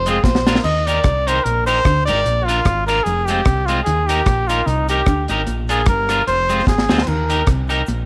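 A clear, up-front trumpet carries this joyful, upbeat ska excerpt at 149 BPM in Eb major, taking over the solo at 0.6 seconds from a bright alto saxophone that opens the melody with light vibrato. Underneath, a deep reggae drum kit with a high-tuned snare, tight kick and dark cymbals plays fills at 0.2 and 6.7 seconds, joined by a round, direct fingered bass, a twangy guitar at the edge of break-up with spring reverb, and a very quiet, grainy cabasa. A mellow, compressed electric guitar sits in the background with a lush chorus on its low riff as the chords move between Eb, Bb and Fm under a light studio reverb.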